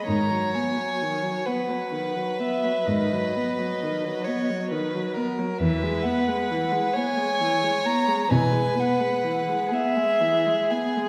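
This short excerpt from a slow, romantic string quartet movement opens with a dark, sul tasto first violin carrying a melancholic melody, with light vibrato and a soft attack, over a smooth, even second violin, a viola shaded with portamento, and a focused cello bass. Moving freely in rubato at about 40-45 BPM in 12/8, the solemn harmony rests on B/G# before turning to E at 5.6 s. The cello stops at 9.5 s while the upper strings continue, all heard from further back in a scoring-stage reverb with a 1.5-second tail.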